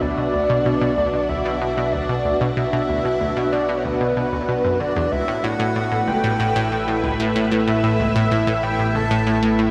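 A drone fades in low in the background beneath a breathy, flute-like synth lead, lush vintage string-machine chords and a round, bright analog pluck riff, all set in a cosmic, mysterious piece of sequencer-driven space music at 94 BPM in B minor, moving from Bm to A at 5.1 seconds and soaked in a huge ambient reverb.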